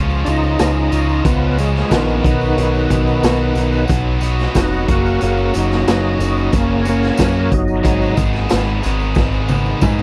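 A tight, double-tracked distorted guitar riff and a growling, up-front picked electric bass open this gritty, brooding classic rock excerpt at 91 BPM in 4/4, joined almost at once by a very quiet, jingly tambourine, a thick, overdriven tonewheel organ that solos through a slow rotary speaker with chorus vibrato until 8.2 s, and a raw garage drum kit with a boomy kick and rolled-off top that plays a fill from 9.2 s, over the chords C#add9, B, F# and G#m in a dry, close 1970s-style studio sound.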